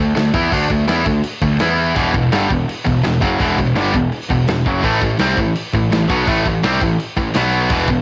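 Heavy and aggressive, this heavy metal excerpt in E minor drives at 167 BPM in straight 4/4, led by an up-front, tight distorted guitar riff over a growly, fuzz-overdriven picked bass, with a punchy acoustic drum kit of kick, medium-tuned snare and bright crash joining at 0.2 s and a second overdriven guitar riffing in the background from 2.0 s, as the chords move from D5 and E5 to Em, A5 and B5 in a small-room home cassette recording with dulled highs.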